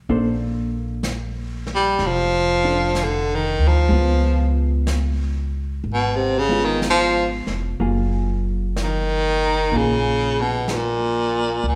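An edgy baritone saxophone sits up front in this tender, late-night jazz ballad, entering at 1.7 s with vibrato and scooped notes as it carries the melody in a jazz style solo. The tempo is a slow 63 BPM in 4/4 with a swung eighth-note feel. The harmony moves from Bbmaj9 to Db7 before settling on F#maj9 at 7.8 s, where the music arrives in F# major. Beneath the horn, an upright bass plucks a woody, growly line and a hollow-body electric guitar offers dark, clean, compressed fingered accompaniment, both present from the opening moments. A vintage brush kit stays low in the mix, its medium-tuned snare and hi-hat played with brushes and a smooth, rolled-off tone. The whole performance is bathed in the reverb of a recital hall, and this brief passage is cut from a longer piece.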